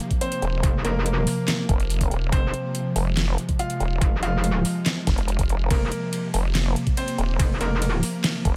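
Heavy wobble dubstep in a half-time feel, aggressive and weighty, where an overdriven knocking kick and a layered kit of deep snare, metallic hats, handclaps and ride drive beneath two up-front saturated wobble basses, one nasal with a formant-filter vowel sweep and one bright and metallic, while a detuned, morphing wavetable pad pumps with the sidechain and a clear, polished baby grand piano melody with tape echo sits on top, all in a light digital ambience.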